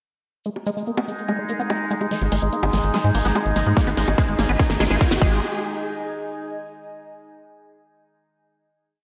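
A squelchy, resonant liquid acid bass drives this short, hypnotic psychedelic trance piece at 145 BPM over a grainy, close tube shaker, its accented six-step loop drifting against the bar under a filter sweep through the build from 2.1 seconds, where it is joined by a tight, rolling sixteenth-note sequencer bass. An overtone-sweeping drone with phaser holds sustained chords while a deep, moody, detuned ambient pad slowly shifts its chords in the background, and a big-room dance kit with a huge snare, bongos, programmed hats and crash is filtered during the intro and adds a fill. A punchy four-on-the-floor kick arrives at 3.8 seconds alongside a very quiet riser, and the whole dreamy mix is soaked in lush hall reverb before a final chord rings out to 7.0 seconds.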